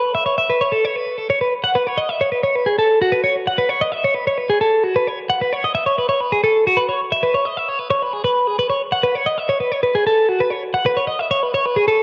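Bright and intricate, this short rock fragment is cut from a longer piece and moves at 132 BPM in a straight 4/4 feel. A lone twelve-string electric guitar carries the whole 12 seconds, playing a clean, picked solo that sits up front in the mix. Its tone is twangy and compressed, ringing between F#4 and F#5. A change in the material arrives at 1.5 seconds, after a brief opening passage. Light reverb and a digital ambience surround the guitar, and the piece was recorded at home on cassette.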